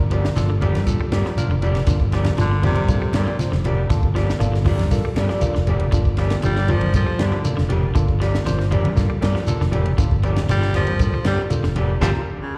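An intense, driving afrobeat groove in G minor at 118 BPM opens on a Gm9 chord, with barky tine electric piano through a combo amp, bright picked clean guitar arpeggios in the background and a round, dark fingered bass up front, joined almost at once by twangy, slightly broken-up lo-fi guitar stabs with spring reverb, a compact cocktail kit with a punchy kick and high-tuned snare, grainy shekere and low-tuned congas. A raspy, gritty baritone saxophone with vibrato and a smooth top takes the solo in short bursts from 2.4 s, the last running from 10.5 s to the end, while the band hits an accent at 12.0 s. Slapback echo marks most of the parts, and the music is heard as a live gig through the venue's PA with recital hall reverb.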